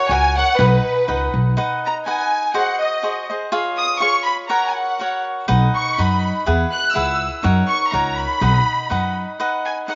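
Mariachi-style Mexican folk in B major at 122 BPM in a lightly swung 2/4, proud and romantic, with a lush, intense violin section carrying the vibrato-rich melody over crisp, bright picked cavaquinho accompaniment, while a woody, growly pizzicato upright bass plays from 0.1 to 1.5 seconds and returns at 5.5 seconds, all in light studio reverb with a soft-topped sound in this short cut from a longer piece.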